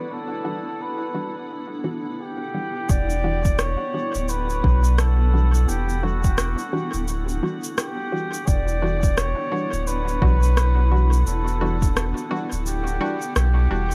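Meditative and hazy, this ambient dub excerpt opens with a veiled, distant bucket-muted trumpet melody carried on dub echo over a blurred, evolving granular cloud pad holding an Em9 chord and dark, filtered chord stabs touched with chorus and gritty 12-bit sampler texture, until at 2.9 seconds a round, up-front sub bass, a soft tape-warm kick and an echoing shaker and rim click enter with a swung sixteenth-note feel, the kick dropping out at 11.9 seconds.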